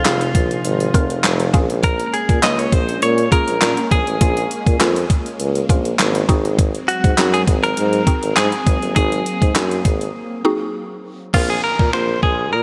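A clean, twangy electric guitar carries the melody up front from the first moment, bright and picked with a digital delay trailing its scooped tone, while a clear tuba with vibrato and scooped notes takes the bass line at the same level. This short dance-pop excerpt from a longer piece moves with an energetic, confident straight four-four feel over chords that shift from Fm7 to Bbm7 and Ab7. A crisp 8-bit drum machine sits front and center, its thumpy kick, medium-tuned snare, hi-hat, handclaps, finger snaps and crash overdriven and bathed in gated reverb as if re-recorded in a large room. Tucked behind, a woody, round FM pluck with a mallet-like attack adds decaying accompaniment through chorus and phaser, and a vintage sawtooth string machine voiced as violas holds soft sustained chords with ensemble chorus, both pumping against the sidechain along with the tuba. After a break at 10.2 seconds, the strings drop out at 11.3 seconds as the harmony lands on Bbsus2 and a faint downlifter slides in beneath, all within a bright 1980s-style digital sound with light reverb.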